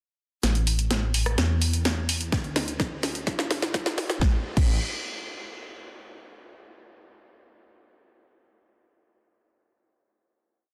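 Euphoric and emotional, this brief festival progressive house piece at 127 BPM is one build-up and drum fill from 0.4 seconds, with up-front house drums of cracking snare, hi-hats, rim clicks and crash, a thick, detuned sawtooth bass with chorus and sidechain pumping, and a punchy four-on-the-floor electronic kick joining at 2.3 seconds, all under light reverb in a dense, heavily limited master before a final note from 4.2 seconds.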